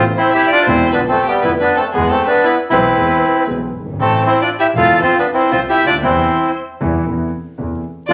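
Soaked in a large studio's wet reverb and dusted with vinyl crackle, this brief excerpt of a melancholic, sultry tango in A minor drifts at a rubato 117 BPM in 4/4, moving through chords such as Amadd9, Bdim, E and F before settling on Am/E. A reedy, bright bandoneon carries the melody up front, while a single bowed violin joins at 0.2 s with a dark, expressive second line full of vibrato and portamento. Beneath them, a mellow, intimate grand piano with audible action noise and a vintage character supplies the accompaniment over deep bass, and a lone bowed double bass adds an earthy, distant low end with light vibrato.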